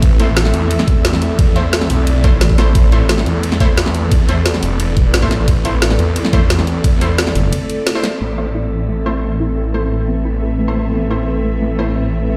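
This excerpt from a dark, technical drum and bass piece opens straight into the drop with a snarling, detuned saw bass up front, its distortion and sidechain pumping driving a tense, futuristic mood over an overdriven, knocking electronic kick. A drum kit with a woody snare and bright hats, its snare, hats, cymbals and room all low-pass filtered, runs alongside crash and ride cymbals until 8.3 s. In the background a swarming, warbling drone holds sustained chords with granular grain and built-in reverb, while an airy, breathy pad with chorus adds a vintage haze, both pumping against the kick. Bold, punchy orchestra-hit-like stabs cut through with a bright, noisy edge, coloured by cassette tape and tape echo, and a thick, growling FM bass jabs in briefly at 2.4 and 7.4 s. After a short break and a band accent at 7.9 s, the kick has already dropped out and the second section at 8.2 s brings soft, round pluck arpeggios with subtle chorus and tape echo, as filter sweeps move across both the pluck and the drone in a stone room's reverb.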